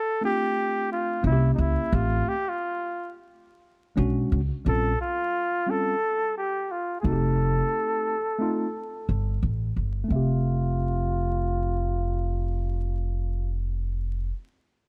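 Vinyl crackle sits over this smooth, warm jazz-hop excerpt at 88 BPM in F major, where an up-front, breathy flugelhorn with light vibrato and scooped notes carries the melody, a worn, slightly out-of-tune tine electric piano comps through a low-pass filter, and a woody, thumpy pizzicato upright bass on gut strings enters at 1.2 seconds, with a filter sweep running from the start to 10.1 seconds before the harmony settles on Fmaj7.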